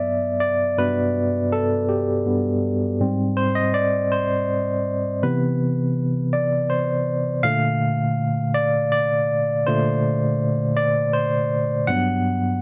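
A dry, close 1970s-style studio sound with light reverb frames this intimate R&B excerpt in a slow 6/8 at 54 BPM, where a solo barky tine electric piano, lightly overdriven through a combo amp with medium tremolo and sitting up front, spans a range of G2 to F#5 through Gmaj7, Abmaj7, Cmaj7 and Bbmaj9 before returning to Gmaj7 at 11.9 seconds.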